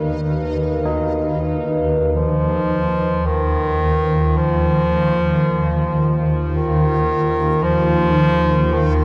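Dark ambient drone in free time, ominous and unsettling, built on a tense, swarming, detuned drone up front, a deep, moody chorused pad in the background that fades in from 2.2 seconds, and a faint reversed, swelling texture with a bright, dreamy edge. Airy bronze carillon bells ring through a diffuse delay until 7.4 seconds, while a clear but distant bass clarinet enters at 2.2 seconds with a roomy, classical-style solo melody. The whole passage, cut from a longer piece, sits in a huge, wet reverb and carries the worn, warbling pitch drift of old cassette tape with dulled highs.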